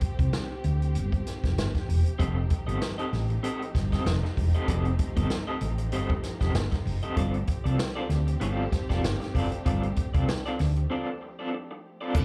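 A swinging 16th-note funk groove at 96 BPM in 4/4 struts forward on a big-band drum kit with a punchy kick, medium-tuned snare, hi-hat and dark crash cymbal, joined at 0.2 s by a round, amped, up-front hollow-body bass. Woody, lush bowed strings played sul tasto hold sustained chords over G9sus4 and F9, and from 2.2 s a bright, twangy electric guitar through a small old amp adds slightly broken-up, lo-fi accompaniment colored by tremolo and slapback echo, while a grainy tube shaker sounds only at the very end. The energetic cut has the feel of a live club set heard through the venue's PA.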